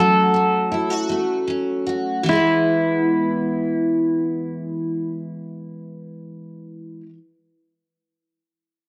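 A clean electric guitar carries the melody up front, colored by harmonic tremolo, in this tender, swaying pop fragment cut from a longer piece, set in E major in 6/8 at 49 BPM counted in dotted quarters. Beneath it, a double-tracked, full-bodied jumbo acoustic guitar picks the accompaniment, moving from F#m to E at 2.3 seconds after an opening that slows down. Light small-room reverb and a dark, warm production keep the sound close and intimate.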